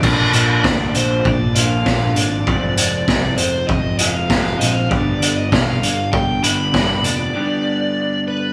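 A raw garage drum kit, gritty and saturated, up front with a boomy kick and a medium-tuned snare, drives this cool, bittersweet indie rock excerpt in a straight 4/4 alongside a fuzz-drenched picked electric bass that sounds round and punchy. From the first moment, an overdriven electric guitar carries the melody high in its range, its picked tone touched with slapback echo. Tucked in the background, a slightly broken-up, lo-fi guitar through a small old amp plays a riff with subtle chorus, while a dark, clean, fingered guitar adds a second riff bathed in spring reverb. The harmony moves from Bb to Fm to G, and a lush hall reverb gives the whole a big arena sound. The drums drop out at 7.2 seconds and the bass at 7.3 for a brief break, leaving the three guitars to ring until the cut at 8.5 seconds.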